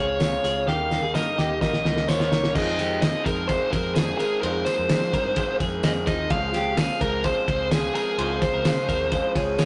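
Jangly indie pop in F minor at 128 BPM in a straight 4/4, this short excerpt from a longer piece feels restless and wistful. A bright, overdriven lead guitar sits up front carrying the melody between Ab4 and F5. Beneath it, a slightly broken-up electric guitar through a small old amp picks out accompaniment, a clean, twangy twelve-string electric guitar picks arpeggios in the background, and warbly lo-fi synth keys with chorus add a nostalgic, detuned shimmer. A round, foam-muted picked bass anchors the low end. The cloth-damped drum kit, muffled and gritty with a fat snare, tight kick and dark cymbals, enters at 0.2 s alongside a jingly tambourine, and a drum fill runs from 0.7 to 2.6 s as the harmony moves from Dbmaj7 through Eb into a Fm7 section that later returns to Dbmaj7. The whole mix has the rough, tube-saturated character of a rehearsal-room recording, with a rolled-off top and moderate studio reverb.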